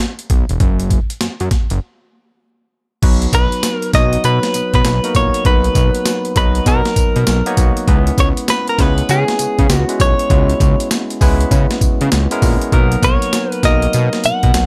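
A gritty, compressed sampler-style breakbeat kit opens this upbeat, flirty new jack swing cut at 99 BPM, its thumpy kick, medium-tuned snare, hi-hat, tambourine and crash sitting up front with a 16th-note swing. A fat, saturated analog bass arrives almost at once, its detuned sawtooth tone evolving under a filter pluck with a fast attack and sustained notes, after a brief rootless C#m7 gives way to unaccompanied rhythm and a break. At 3.0 seconds the music settles into B major on a Bmaj7, where a bright, barky tine electric piano played through a combo amp adds clean accompaniment further back in the mix. A direct-recorded, picked clean electric guitar carries the melody from 3.3 seconds, its compressed, warm tone placed up front. The harmony moves from Bmaj7 to C#m7 and back. The dry sound has little reverb, and the passage is cut from a longer piece.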